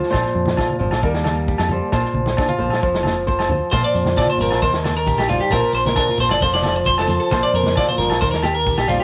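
This carefree, sunny highlife guitar band piece, cut from a longer work, opens with an up-front, fingerpicked acoustic flamenco guitar and a vintage drum kit, both colored by cassette tape. The drums have a medium-tuned snare, a punchy kick and a rolled-off top. A round, dark fingered electric bass joins almost at once, along with ringing agogo bells that sound distant in a large room, and bright, low-tuned congas with a thin-skin, compressed, saturated tone sitting in the background. At 3.7 seconds a clean, twangy electric guitar steps up front with picked arpeggios treated with subtle chorus, tape echo and cassette coloring, while a grainy, mellow shekere adds texture from afar. At a straight 134 BPM in 4/4 and Bb major, the harmony cycles among Bbsus2, Eb and F5, later brightening to Bbadd9, Eb and F. The home cassette recording carries light reverb and a small room ambience.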